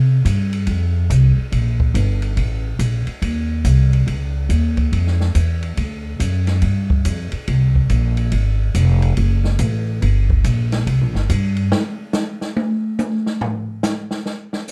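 Small-group swing and bop jazz at 141 BPM with a cool, late-night mood, this dry, dark excerpt pairs an up-front, woody, thumpy pizzicato upright bass with an acoustic small-room drum kit of dark cymbals, a medium-tuned snare and a boomy kick, until the bass stops at 11.7 seconds and the drums take a short solo to 14.7 seconds.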